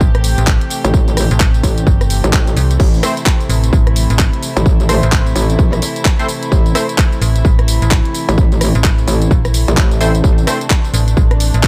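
Swaggering and bouncy, this bass house cut moves at 129 BPM in A minor, its 16ths pushed by a 61% swing and anchored on a single Am chord. A punchy electronic kick sits up front alongside a house kit of crash cymbal, handclaps, hi-hat, rim click and tambourine, both carrying the boxy character of a small room. Two basses drive the groove: a metallic, digital FM bass with a mellow decay runs throughout, while an aggressive, saturated wobble bass joins at 0.8 seconds, its sustained sine-based tone thickened by chorus and tube grit. Above them, a dark studio string section holds soft, floating bowed chords played sul tasto, pumping under the sidechain. A nasal, band-passed sawtooth stab with detuned brightness, chorus and dub echo cuts in from 3.0 to 6.9 seconds and again near 10.0 seconds. The mix is dry and close, with the low end and kick dominating this brief section of a longer piece.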